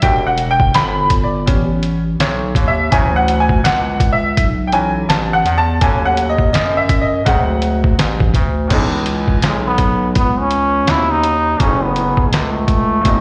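A bright, woody upright piano takes the lead from the opening, its worn, slightly detuned tone carrying a solo through the first 8.7 seconds with a slapback echo trailing each phrase. This smoky, mellow jazz-hop cut from a longer piece moves at 83 BPM in 4/4 with a swung sixteenth-note feel in C# minor, drifting through chords such as Em7, Dmaj7 and D7#11 before settling on C#m7 and F#m7. Underneath, a growling, thick FM bass with a fast attack and sustained notes sits up front beside a compressed, muffled trip hop sampler-style kit that is pitched down, with a thumpy kick, a medium-tuned snare, hi-hat and crash cymbal. At 9.5 seconds a trombone with a metal mute enters with a jazz-style solo, buzzy and thin yet breathy with a smooth top, coloured by slapback echo and analog delay. The whole performance sounds like a live gig heard through the venue's PA, bathed in recital hall reverb and light digital ambience.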